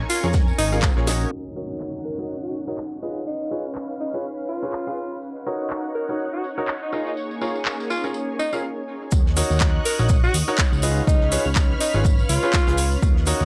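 This excerpt of energetic, soulful piano house at 123 BPM in Eb minor opens on three sustained layers, each pumping to the sidechain: a silky analog string pad with ensemble chorus, a fat, detuned sawtooth bass, and a cloudy granular pad with its own reverb sitting in the background. A breathy alto saxophone with jazz vibrato and tape echo carries the melody, while a bright baby grand piano with audible action noise plays a riff that also pumps. A house drum kit with a cracking snare and metallic hats runs throughout, joined at the start by a muffled, lo-fi soul kit, a tambourine in the background and an overdriven, punchy electronic kick, with a drum fill at 1.1 s. From 1.3 s a filter sweep runs over a faint electronic downlifter as the chords move between Ebm7, Db7 and Bbm7, and the tambourine returns along the way. A brief break then gives way to the drop at 9.1 s, where the bass, soul kit and kick come back in, all within a dry, gritty, filtered small-room sound.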